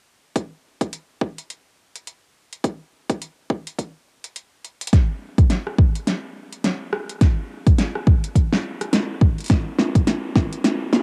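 A punchy, overdriven electronic kick sits up front in this playful, funky glitch hop excerpt at 105 BPM in 4/4, swung on the 16ths. A layered pop drum kit plays alongside it with a fat snare, rim clicks and metallic hi-hats, both parts re-recorded in a small room onto cassette and bathed in a moderate spring reverb. The kick drops out at 4.4 seconds and a drum fill lands at 4.6 seconds, and from 4.9 seconds a build-up with a filter sweep and a continuing fill carries the passage to its cut-off.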